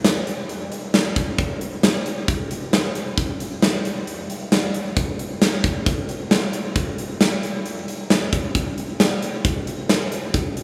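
A straight 134 BPM pop beat in 4/4 drives this short cut from a longer piece, carried entirely by a huge acoustic arena drum kit from 0.0 to 10.6 seconds. The kit sits up front, with a punchy kick, a medium-tuned snare and hi-hat marking out the groove. Its sound has a pumping room quality and a hall character that give the drums real size. A moderate, lush hall reverb hangs around the playing, while the overall mix keeps the rough feel of a home demo with small room ambience. The mood is driving yet melancholic, with the lone drum part pushing forward under a faintly wistful air.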